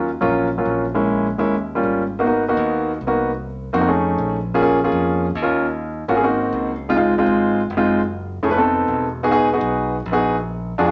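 A wet studio reverb with a short decay of 0.8 seconds surrounds this sultry, sophisticated slice of Afro-Cuban jazz, cut from a longer piece and moving at a brisk 204 BPM in straight 4/4 in E-flat minor. Up front sits a concert grand piano playing accompaniment through the full 10.9 seconds: intimate and natural, with deep bass and the audible noise of its action. Beneath it, a fingered electric bass with a bright, direct tone holds the low end, sitting quieter in the mix than the piano. The harmony opens on Ebm9 and, after a brief opening passage, shifts at 2.1 seconds into a longer stretch that moves through Abm9, F7alt, Dbmaj7 and Emaj9 before landing on Bb. The rich extended chords and the close, detailed piano sound give the short passage an elegant, late-night character.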